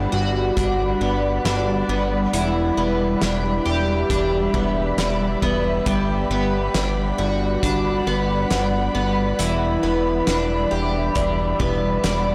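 A slow, straight 4/4 pulse at 68 BPM carries this blissful, ethereal dream pop excerpt in G major, with a loose indie drum kit entering at 0.6 s: a punchy kick, fat snare and hi-hat set in a pumping studio room. Up front, a picked, plugged-in twelve-string acoustic guitar plays bright, octave-doubled arpeggios with a parlour character, shimmering through analog chorus and delay. Beneath it, an ethereal, airy pad holds mellow sustained chords with slow attack and long release, its detuned unison voices softened by ensemble chorus and built-in reverb. A fat analog bass, thick and saturated with a detuned sawtooth tone and a fast filter pluck, sits up front in the low register. The harmony rocks gently between Gmaj7 and Em7, and the whole mix is bathed in a moderate shimmer reverb with a 4.4 s tail, while the recording itself sounds blown-out and overdriven.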